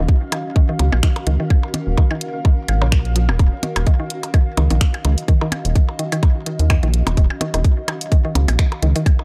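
A swung 127 BPM groove in 4/4 drives this quirky, cool minimal techno excerpt in Eb minor, built on an Ebm7 chord: an overdriven, tight electronic kick sits up front beside a rubbery, hollow square bass that pumps with the sidechain, while a tape-toned garage kit of finger snaps and hi-hat, digitally delayed percussion blips, a woody, mallet-like synth pluck treated with chorus, phaser and dub echo, a pulsing gated texture in the background, and a cloudy, evolving granular pad fill out a dark, dry mix.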